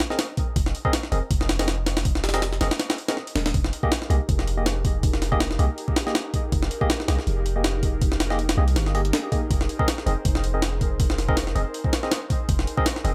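A compressed, pitched-up jungle drum kit opens this raw, dark drum and bass excerpt at 161 BPM, its thumpy kick, high-tuned snare and hi-hat sitting gritty and up front with a lightly swung sixteenth feel. Bright, barky tine electric piano stabs arrive almost at once through a combo amp, lightly overdriven, carrying vintage 12-bit sampler crunch and dub echo. A deep, long 808-style sine bass joins at 0.6 seconds, and at 3.8 seconds a detuned, warbling, lo-fi pad with chorus, phaser and its own reverb drifts in the background over chords moving between Abadd9/F and Fm11, all within an echo-heavy digital ambience.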